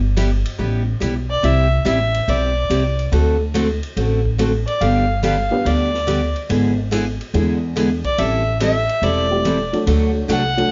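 A lightly reverberant, soft-topped mix frames this swinging, playful western swing passage in G major at 142 BPM, cut from a longer piece. A thumpy, woody pizzicato upright bass and a bright, full-bodied picked dreadnought guitar sit up front, with a natural-sounding big-band drum kit (boomy kick, medium-tuned snare, hi-hat and ride) further back. At 1.3 seconds a dark, smooth-topped bowed fiddle takes a solo with light vibrato and plate reverb, and at 5.5 seconds a detuned, jangly vintage upright piano joins over changes moving from G6 through E7/G# and Am7 to D.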